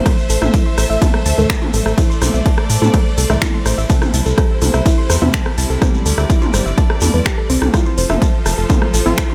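Melodic techno at 125 BPM in A minor, hypnotic and melancholic, cut from a longer piece: a clear, lush studio string section holds sustained chords with vibrato, while a soft round pluck spins arpeggios through chorus and dub echo and a muted, filtered dub chord stab sits very quiet beneath the harmony moving from Am to C at 3.9 seconds and F at 7.7 seconds. A punchy, up-front electronic kick drives a layered techno kit of finger snaps, smooth hats, ride cymbal, rim click and toms, with a grainy shekere in the background. A deep, round analog bass enters at 0.3 seconds with tube saturation, and sidechain pumping breathes through the strings, pluck and bass under light digital reverb.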